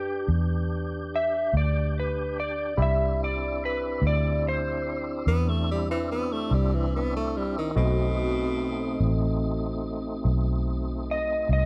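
A slow blues in 12/8 at 48 BPM, counted in dotted quarters with a straight feel, this soulful, smoky fragment is cut from a longer piece and moves through Em7, Cmaj7 and B7b9. An electric slide guitar carries the melody up front, its tone dark and slightly broken-up as it sings between G4 and E5. Beneath it, a foam-muted, round fingered electric bass sits amped and prominent, while a tonewheel organ holds full, lightly overdriven chords through a slow rotary speaker with chorus vibrato. A barky tine electric piano, bright and pushed through a combo amp with overdrive and lush chorus, fills in accompaniment from the background. From 5.3 to 9.4 seconds a breathy tenor saxophone adds a close-miked second line in a jazz style, its vibrato giving the passage extra heat. The sound is a dry, close 1970s-style studio recording touched with digital ambience.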